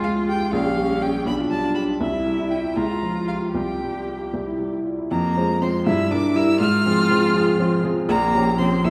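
In a 6/8 at 80 dotted-quarter beats per minute, this quick classical-period movement for piano trio surges forward in F minor with a stormy, restless mood, and it is cut from a longer piece. A rich, smooth solo violin carries the melody high above, from E5 up to F6, its bowed line even and touched with vibrato. Beneath it a single cello sings an expressive second line between Bb3 and G4, with vibrato and portamento. The grand piano, polished, present and placed up front, supplies the accompaniment across a broad span from Bb1 to C5. The harmony moves through chords such as Db, G7/B, C and Csus4 in the opening section before turning to Fm, Edim/G and Gm7b5/Bb in a second section from 5.1 seconds. The trio sounds from further back in a scoring stage, bathed in a wet reverb with a 1.9-second decay.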